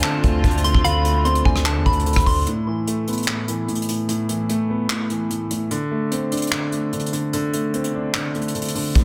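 Hip hop in a trap style, this eerie, hard-hitting excerpt moves at 148 BPM in 4/4 with a half-time feel. A dark, boxy grand piano carries the accompaniment up front through the whole clip, while a soft brush drum kit with punchy kick, handclaps, hi-hat and rim click sits up front, airy and polished. In the opening seconds a pure, gentle FM synth bell plays the melody through chorus, phaser and delay, over floating, sul tasto strings held quietly in the background and a heavy, sine-based 808 bass. A hollow, detuned square pluck adds a brief second line in the background around 0.8 seconds. At 2.5 seconds the music drops into a break on piano and drums, moving from Dm7 to Asus2 and then D5, before the 808 returns at 9.0 seconds. The mix carries light small-room reverb and a dense, heavily limited modern master.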